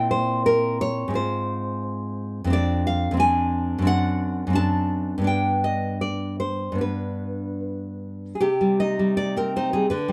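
A fingerpicked nylon-string guitar sits up front in this melancholic, passionate romantic piece for solo classical guitar, its fresh strings ringing bright across a range from F2 to A5, with audible finger squeak. Played with rubato in 2/4 at roughly 72-90 BPM and tuned to A4 = 439 Hz, it moves from C7/Bb through Fm/Ab, Dm7b5/F and D7/F# to G at 5.3 seconds, then turns to C minor as a new section opens at 8.4 seconds. The performance is captured live with moderate small-room reverb, and the fragment is cut from a longer piece, ending at 10.1 seconds.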